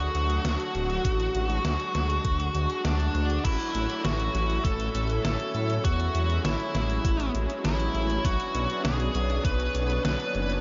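A high-gain lead guitar, distorted and up front with tape echo, carries the melody through this nostalgic, dreamy synthwave excerpt at 100 BPM in A major, moving over chords of D, A6 and Bmadd9. Beneath it, a thick detuned saw bass with chorus sits forward in the mix, while a lush unison pad holds sustained chords with chorus and sidechain pumping. An overdriven 8-bit drum machine supplies crash, hi-hat and snare, joined by a thumpy electronic kick from 1.0 to 9.6 seconds, all bathed in a huge ambient reverb that leaves the mix soft and hazy.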